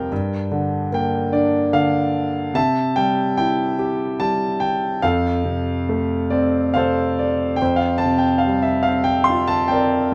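A clear concert grand piano opens this short excerpt of lyrical classical solo piano in F major, moving in a tender, calm 6/8 at a slow 46-50 BPM with free rubato. Close, detailed miking puts the piano up front, so its deep bass, boxy body, long sustain and audible action noise come through in light reverb as the harmony moves from Gm7 through C to F across a range from F2 to C6. A brief piano fill at 6.3 seconds leads into a new section at 7.6 seconds that settles on an Fsus2 chord.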